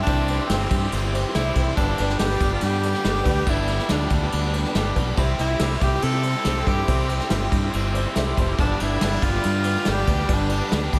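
A dreamy mix soaked in lush hall reverb, with a small room ambience underneath, gives this short fragment of folk rock and heartland rock a jangly, hopeful glow. A bright, close-miked tenor saxophone carries the melody with pop-style vibrato and a tape echo trailing its lines. Beneath it, a double-tracked garage guitar plays an overdriven riff, while a boxy old ladder-braced acoustic guitar picks its accompaniment in the background. A fingered electric bass sits direct and up front beside a soft brush kit whose punchy kick, medium-tuned snare, ride and crash sound distant and roomy. A very quiet, flute-like tonewheel organ holds sustained chords through a slow rotary speaker, and a dark, woody upright piano adds a brief fill at 8.0 s as the harmony moves between C and G.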